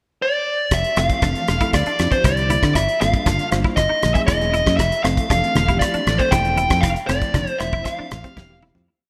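A samba groove on a damped 70s drum kit, with its fat snare and tight kick treated with gated reverb, drives this funky, bright electric jazz fusion piece at 118 BPM in 4/4 and F major. A dark, overdriven lead guitar opens with a pickup at 0.2 s, then plays up front with a picked, motif-based melody of hook phrases. At 0.7 s the drums, very quiet low-tuned congas played with hard hands, and a growly fingered electric bass with a syncopated riff come in together. A bell-like tine electric piano with analog chorus adds syncopated drop-2 chord stabs, while a compressed semi-hollow guitar with ensemble chorus and digital delay repeats a clean ostinato in the background. The harmony moves through Fmaj7, Dm11, Gm9 and Gb9 before returning to Fmaj7. A lush hall reverb colours the bright 1980s-style digital mix, and the piece fades out from 6.8 s, closing on a drum fill.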